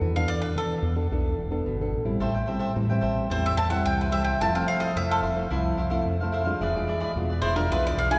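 A picked bowl-back mandolin with doubled strings takes the lead in this bittersweet yet lively samba, carried over a dark, thumb-plucked classical nylon-string guitar with audible finger squeak and a round, amped fingered electric bass, while a crisp cavaquinho joins at 2.2 seconds as the harmony moves from E7sus4 through Am7 and Fmaj7 to E7b9, all bathed in a long church reverb.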